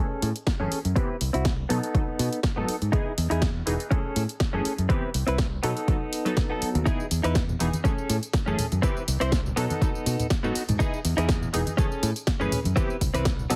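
A swung 16th-note groove at 122 BPM in 4/4 drives this sunny, joyful filtered disco house in E major, with an overdriven, punchy electronic kick up front, a dry analog drum machine adding hi-hat, rim click, snare and tambourine, and warm, close tambourine and congas joining in the background at 6.9 seconds. A bright fingered electric bass and a clean, picked electric guitar riff recorded direct ride the sidechain pumping beside a detuned sawtooth polysynth comp colored by chorus, phaser and cassette tape. A filter sweep runs through the whole excerpt over cycling Amaj7, Cmaj7, B7 and Emaj7 chords, all within a heavily compressed, radio-like sound with light reverb.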